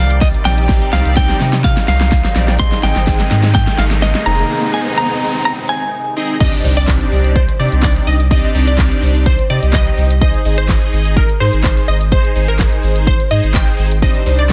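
Dance-pop in C minor at 126 BPM, driving and confident, where a clean, scooped electric guitar melody with tremolo and dub echo rides a soft-attack filtered supersaw swell, a faint jingly tambourine and a very quiet riser through a build-up with a drum fill and a brief break. The drop at 6.4 seconds then brings an impact and a lush, bright unison pluck melody with phaser and dub echo. These sit over parts that carry on from the build-up: the punchy, up-front pop drum kit, a deep saturated sub bass pumping to the sidechain, and a fat detuned polysynth with chorus and phaser. It is all held in a dense, heavily limited modern master, cut from a longer piece cycling between Cmadd9 and Ab.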